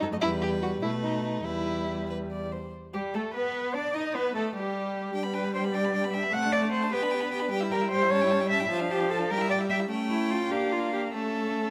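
In 6/8 at 99 beats per minute counted in dotted quarters, this quick classical-period movement for string quartet moves with a rubato feel and a dramatic, stormy mood, heard as a brief passage cut from a longer piece. All four players bow with vibrato throughout the 11.7 seconds. The first violin carries the melody between G4 and B5 in a smooth, even, close voice, while the second violin's focused tone shapes an inner line from G3 to G4. The viola's accompaniment sits up front yet sounds distant, and the cello, also up front, anchors the bass with a range reaching from E2 up to F#5. The harmony opens in E minor around B7, then at 2.7 seconds a new section turns toward G and a restless chain of diminished and dominant chords that lands on A, all set in light reverb.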